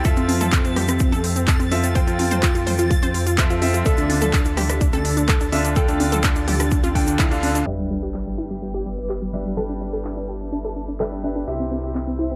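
A punchy, tape-warm electronic kick drives this dreamy, expansive progressive house passage at 126 BPM, joined by a deep house kit with smooth hats and handclaps, background analog drum-machine congas, rim clicks and toms, a grainy egg shaker, a rumbling detuned saw bass, lush sidechain-pumped pluck arpeggios with tape echo, gritty 12-bit-sampled bright grand piano stabs and a reversed, swelling granular texture, until the kick drops out near 7.3 s and a sub drop impact at 7.7 s opens onto filter-swept sustained chords from a thick, chorused and phased unison pad.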